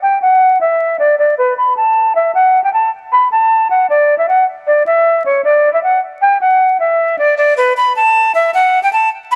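A crackle of vinyl and the light reverb of a small room frame this short hip hop passage, cut from a longer piece. A jazz flute plays solo for the full 9.4 seconds, sitting up front with a breathy, reedy straight tone and a crisp chiff on each attack. Its line stays between B4 and B5, shaded by a low-pass filter, and a filter sweep runs across the flute from the start until 7.8 seconds. The tempo is 155 BPM in 4/4 with a half-time feel, tuned to A4 = 443 Hz. The mood is menacing yet melancholic, the metallic brightness of the flute cutting through the dusty, intimate atmosphere.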